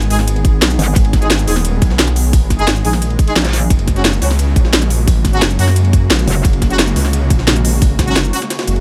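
Dark and tense, this short cut of technical drum and bass runs at 175 BPM in a straight 4/4, moving from G#m to F#add9 at 3.7 seconds. A swarming, granular drone sits in the background with slow-attack sustained chords, bathed in its own reverb and pumped by the sidechain, while a thick, detuned saw bass sits up front with chorus and overdrive, pumping along with it. Three short bursts of metallic, FM wobble bass, the first at 0.8 seconds, cut through with a bright, saturated bite. The drums are layered: a tight, up-front electronic kick, a kit with a cracking snare and crisp hats, and a gritty, pitched-up sampler-style jungle kit tucked behind them, overdriven and thinned by high-pass filtering on its snare, hats and cymbals. A warm, classical-style brass section punctuates the groove with stabs trailed by dub echo, and the dry mix ends on a brief break at 8.5 seconds.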